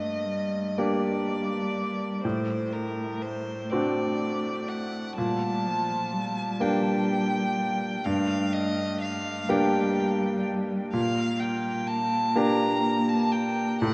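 A slow, rubato lilt in six-eight carries this elegiac, melancholic romantic movement for piano trio, cut from a longer piece and heard in a vast, echoing cathedral space. A smooth, rich violin with vibrato sings the melody while a focused, close cello with vibrato traces a second line beneath it. A bright, polished baby grand piano supplies the accompaniment up front, its action noise audible in the intimate sound.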